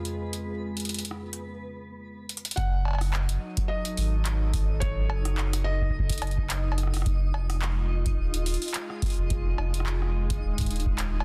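Swung sixteenths from a booming analog drum machine with metallic hats, cowbell, handclaps and rim clicks drive this melancholic, glitchy IDM excerpt, which opens over a warbling, nostalgic lo-fi pad coloured by chorus and phaser and a twinkling granular shimmer, before a break and drum fill give way at 2.6 seconds to a deep, tape-toned electronic kick, a round, up-front sine sub bass and a soft, felt-muted upright piano melody with audible action noise and tape echo that stops at 6.7 seconds, all in a dense, heavily limited mix with little room sound.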